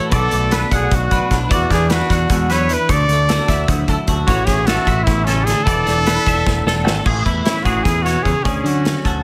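Playful and intricate, this short cut from a longer math rock and midwest emo piece runs in a straight 7/8 at 302 BPM (eighths) in A major, tuned to A4 = 438 Hz, with a clear, close-miked trumpet carrying the pop-style melody up front with vibrato and scooped notes. Beneath it, a bright, clean, compressed twelve-string electric guitar provides accompaniment, while a twangy electric guitar treated with ensemble chorus spins arpeggios, and a growling, overdriven picked bass adds weight. A loose indie drum kit with a tight kick and medium-tuned snare sits in a small, pumping room and plays a fill at 6.5 s, leading from the Bm7–E9sus4–Dmaj9–A6–E7sus4 progression into Amaj9 and Dmaj7 at 7.1 s, all under light reverb and a faint mains hum.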